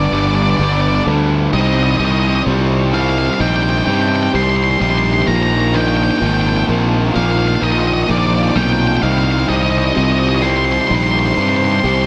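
A growly, punchy fuzz bass sits up front from the first second alongside two riffing guitars in the background, one bright and distorted and the other raw and overdriven, both with slapback echo. This slow post-rock piece in C minor at 64 BPM feels cathartic and melancholic. A dark octave-fuzz lead guitar carries the melody up front, while a worn, slightly out-of-tune electric piano plays very quiet arpeggios and a cloudy, blurred granular pad holds sustained chords through a lush hall reverb that gives a big arena sound.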